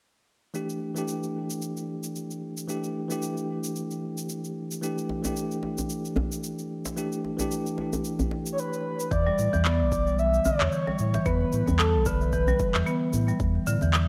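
A breathy, flute-like synth lead carries the melody in this meditative organic downtempo piece at 112 BPM. It enters at 8.5 s, coloured by tremolo, vibrato, subtle chorus, cassette tape character and tape echo. The track opens on a bell-like tine electric piano over an Em7 chord in E dorian, its clean tone shaped by sidechain pumping, a low-pass filter and tape echo. Overdriven electronic cabasa and handclaps swing on the 16ths, and a close, dry acoustic djembe joins at 5.1 s. At 9.1 s the electric piano gives way to a woody, percussive marimba playing arpeggios with vintage 12-bit sampler grit and echo, while a round sine sub bass and a deep, layered, overdriven electronic kick arrive underneath. A moderate echo chamber reverb lends a digital ambience to this section of a longer work.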